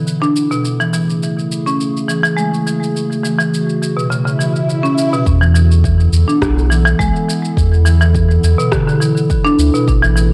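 A warbling, detuned pad with chorus, reverb and sidechain pumping opens this earthy, nostalgic organic downtempo excerpt with sustained chords, while an up-front, woody marimba with hard mallets plays bright arpeggios through tape echo over a lightly swung electronic shaker and rim click re-recorded in a large room. An electronic swell arrives at 4.3 seconds, and at 5.3 seconds a round, sine-like sub bass, also pumping, joins with a deep, layered electronic kick drum. The recording has a dry, gritty cassette character with transformer saturation and digital ambience.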